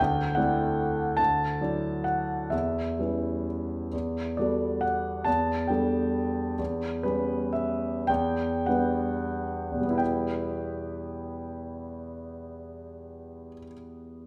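A clear, intimate concert grand piano, up front with audible action noise, deep bass and long sustain, plays alone through this hazy, wistful fragment of impressionist classical music in a rubato 3/4, drifting through chords coloured with added ninths and sixths and slowing from 2.5 to 10.0 seconds before settling on a plain minor chord for a brief closing passage, heard inside a wet recital hall reverb.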